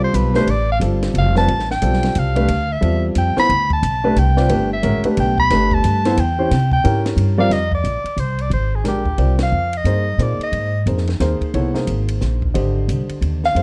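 A clear soprano saxophone, with light vibrato, subtone and scooped notes, solos up front over a warm baby grand piano, a woody, thumpy pizzicato upright bass and a dry cocktail drum kit with dark cymbals and a high-tuned snare in this cool, intense modal jazz waltz cut from a longer piece, where a shift of key at 7.5 seconds leads to a band accent at 9.3 seconds before the saxophone drops out at 10.8 seconds, all in a dark production with light reverb.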